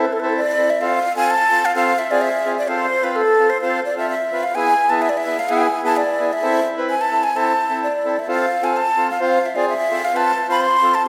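A breathy, mellow silver concert flute carries the melody up front, its straight, tongued tone close and slightly unsteady as it ranges from A4 to C6 over a festive yet bittersweet klezmer tune at 129 BPM in 2/4. Beneath it, a reedy, full accordion with dry tuning and a vintage, band-limited character supplies the accompaniment through a minor-key progression of Am, F and E, with the opening phrase returning at 8.3 seconds. A wet scoring-stage reverb gives this 11-second fragment of a longer piece the spacious air of a church or concert hall.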